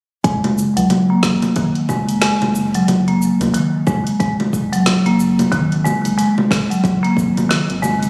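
This short organic downtempo piece opens at 0.2 seconds with a marimba, a round analog bass, a deep house drum kit and an electronic kick all arriving together, setting a meditative, warm mood. Played with medium hard mallets on rosewood bars, the woody marimba spins arpeggios up front in the mix, passed through a low-pass filter and delay, with a filter sweep running across its whole length. Beneath it, the bass sits low and mellow, a sine-like square wave with a fast attack and sustained notes that pump against the sidechain. The drum kit is layered and produced, with congas, a shaker, dark hats and a woody snare set in studio ambience, all moving with a gentle sixteenth-note swing, while the deep electronic kick drops out at 7.3 seconds. A lush hall reverb surrounds the sound, which was captured on a phone in the room and compressed, giving the fragment the feel of a slice cut from a longer track.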